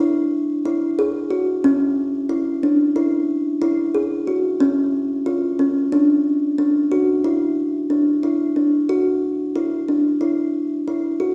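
Counted in a straight 9/8, this short progressive instrumental, cut from a longer piece, feels intricate and driving. A lone kalimba carries everything from 0.0 to 11.3 seconds, plucked with the fingertips and sitting up front in the mix. Its tone is woody and mellow, with soft attacks that ring out from the solid board, and its notes stay within a compact span from C#4 to G#4. The music moves through two sections, shifting to the second at 7.6 seconds. A wet recital-hall reverb, like that of a church or concert hall, surrounds the instrument and lets each note bloom into the space.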